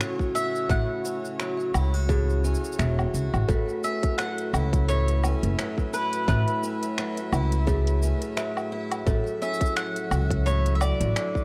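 A dark, warm production with light small-room reverb frames this short folktronica cut, pastoral and warm in mood, at 86 BPM in A major with a gentle 16th-note swing. A bright, double-strung bowl-back mandolin carries the melody through tape echo over a boxy, picked acoustic guitar playing swing-style arpeggios with its own tape echo, smooth vibrato-rich sustained chords from a bowed string quartet, and a ringing kalimba with digital delay heard in the background from 0.7 to 9.3 s. Up front sit a tight, overdriven electronic kick that enters at 0.2 s and a woody pizzicato upright bass, with a crisp, overdriven kit of cabasa, finger snaps, hi-hat and woodblock, as the harmony moves from F#m7 to A69 and Dmaj7/A.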